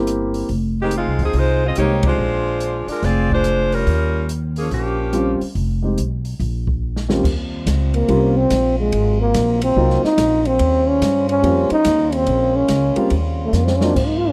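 Swinging and brassy, this big band swing excerpt moves at 143 BPM in Eb mixolydian, with a woody, thumpy pizzicato upright bass and an airy drum kit with dark cymbals and a boomy kick driving it from the start, while a concert grand piano with deep bass comps around an up-front, vibrato-rich saxophone section melody coloured by slapback echo. After a band accent at 2.0 seconds and a drum fill, a mellow trombone takes a lightly vibrato solo from 7.9 seconds over soft-attack, vintage-toned trombone section chords sitting in the background. The whole cut has the dry, close sound of a 1970s studio, with another drum fill near its end.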